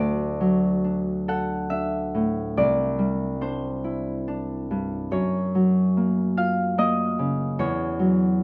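A ringing, up-front Celtic harp sits in a stone room with moderate reverb, its acoustic, thumb-plucked tone spanning from C2 to F#5. This graceful, serene classical solo piece for harp moves in a rubato 3/4 at around 64-74 BPM in D major, tuned to A4 = 442 Hz. Cut from a longer work, the brief passage drifts through D, Cadd9, F#maj7 and Esus2 before breaking off at 8.4 seconds.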